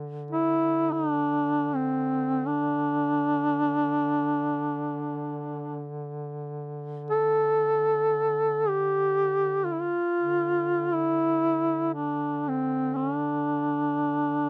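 Unfolding in free time, this fragment from a longer Caucasian lament drifts in D minor, tuned to A4 = 439 Hz, with a solemn, longing mood. A mellow duduk sounds a low drone on D3 from the very start, its tone carrying gentle vibrato, scooped notes and a smooth top. At 0.3 seconds a second duduk enters up front with the melody, moving between C4 and A4 with a soft attack, vibrato and scooped notes in a folk style. The melody duduk has a warm voice and sits clearly above the quieter drone, which stays in the background until both parts end at 14.5 seconds. The sound is dry and close, in the manner of a 1970s studio recording, touched with only light reverb.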